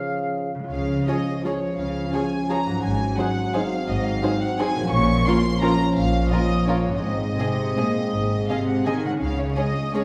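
A section of violins carries the melody from 0.7 s, played sul tasto with a soft attack and a pure, floating tone that sits close in the sound. This is an elegant, festive orchestral ballroom waltz in 3/4 and Db major, moving with rubato at 152-186 BPM, and it is cut from a longer piece. For the first half second, a clear oboe, a metal-toned flute with vibrato, a smooth-topped clarinet and a mellow bassoon sound briefly. Beneath the melody, a tight French horn section holds mellow sustained chords, and a ringing, fingerpicked concert harp plays arpeggios in the background. A second violin line and a very quiet, woody, lush viola section join at 1.1 s, while a distant cello section and a dark double bass section provide the bass through chords of Db, Ab7, Bbm and Ab. The orchestra is heard from further back in a reverberant recital hall, with vinyl crackle and a faint mains hum.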